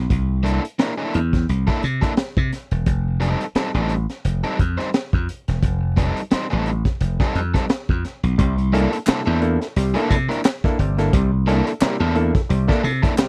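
A bright, punchy slap bass drives this energetic funk fragment over a gritty, dark breakbeat kit with a high-tuned snare and an up-front overdriven electric guitar, until an overdriven clav with slapback echo adds stringy stabs from 8.4 seconds and crisp group handclaps join in the background at 9.1 seconds, all captured in a dry, close 1970s-style studio sound.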